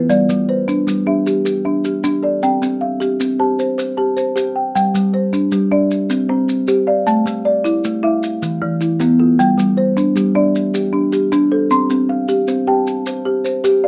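Lightly reverberant and warmly rippling, this excerpt of Southern African traditional music moves in 12/8 at 104 BPM in G mixolydian, with a round, woody folk marimba under soft mallets and a dark, ringing, thumb-plucked kalimba weaving mbira-style interlocking arpeggios up front, grainy maracas sitting close behind, and a new section opening at 4.7 seconds.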